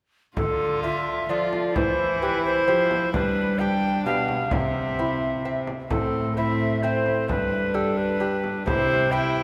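At 0.4 s a small period consort enters together in a courtly yet rustic Renaissance-style dance in triple time: an airy, up-front tenor recorder carries the tongued melody with audible chiff, while a nasal, gut-string solo violin plays a close second line beneath it. A delicately fingerpicked lute with doubled gut strings supplies the accompaniment, a single bowed cello with a rich, reedy tone holds the bass, and a deep, large frame drum keeps time until 8.9 s. The whole passage sits in a wet church reverb with a long 3.2-second decay and is cut from a longer piece.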